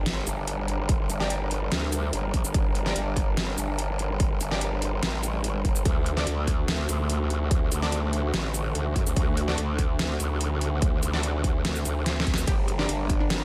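A half-time 4/4 groove at 145 BPM drives this heavy, menacing wobble dubstep excerpt in G harmonic minor, opening on an impact with a very quiet sub drop as an up-front kit of deep snare, metallic hats, ride cymbal and shaker enters, before a punchy, overdriven electronic kick arrives at 0.9 s, with a drum fill at 12.1 s. A growling, saturated growl bass wobbles through a formant filter with chorus and overdrive beneath a lush, detuned supersaw pad that pumps with sidechain and a low-pass filter in the background, while a bold orchestra-hit-like synth stab flickers through phaser, delay and reverb over the move from Gm to D. At 12.5 s the harmony returns to Gm as a full-bodied, wave-folded unison pluck enters with a short melodic figure.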